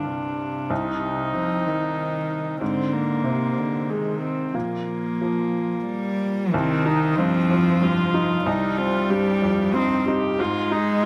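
Close, detailed microphones and light reverb frame this fragile, reflective neoclassical excerpt in C minor, moving at a rubato 94 BPM in 3/4, where a woody, brilliant upright piano and a floating, pure sul tasto viola share the accompaniment while a single cello with light vibrato and an airy bow adds an intimate second line, all three playing throughout, as the harmony passes from Cm through Ab and Gm7/Bb before returning to Cm at 6.5 seconds and settling on Ab5.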